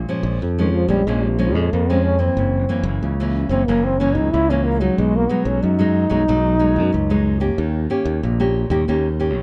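A straight 4/4 samba-and-choro lilt, lively and nostalgic, is carried by a fingerpicked classical nylon-string guitar and a growly, bright fingered electric bass, while a mellow, jazz-style trombone takes the solo melody from 0.6 to 7.6 seconds with light vibrato and scooped notes over Bbm7, Gb7, B6 and Eb7, all placed up front in a dark production with light reverb in this short cut from a longer piece.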